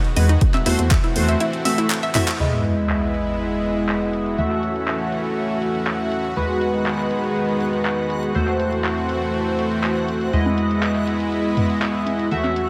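Hopeful and expansive, this progressive house excerpt moves at 121 BPM in E major, with a lush, airy supersaw pad and a plucky, wave-folded analog bass pumping under sidechain beneath a glossy, up-front chorused polysynth that stabs through chords like Am6/E, Emaj7 and G#m7. A bright, detuned analog pluck arpeggiates with tape echo at the start, while a punchy, overdriven kick appears briefly from 0.4 s alongside a filtered deep house kit of handclaps and hi-hats and analog electronic congas and toms. After a break, a drum fill and a band accent, an electronic sub drop lands at 2.4 s, and a reversed, dreamy granular texture drifts in the background from 3.5 s, all set in a moderate hall reverb.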